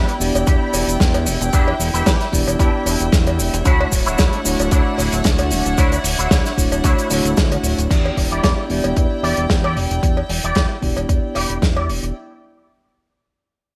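A fat, detuned sawtooth bass and a mellow tine electric piano that pump against the beat open this sensual, cosmic nu-disco fragment together with a floating bowed string section and a twangy envelope-filtered guitar riff with chorus and delay. A soul drum kit with dark cymbals and gated reverb and a cowbell tucked in the background follow, and a punchy, layered electronic kick arrives half a second in to drive it all. The whole fragment sits in a bright 1980s-style digital production whose opening drop gives way at 7.9 seconds to filter sweeps on the bass and electric piano.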